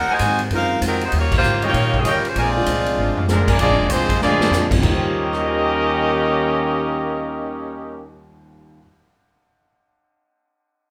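Recorded live in one large room with moderate reverb, this brassy, swinging big band jazz fragment opens with a bright, vibrato-laden saxophone section carrying the melody over a woody pizzicato upright bass, a dark baby grand piano in the background, a boxy fingerpicked acoustic guitar kept very quiet, punchy up-front drums and soft-attack stabs from a loose, vintage trumpet section, before a clear trombone section adds a second line at 2.4 seconds and a tight, present trumpet section takes over the melody at 3.3 seconds.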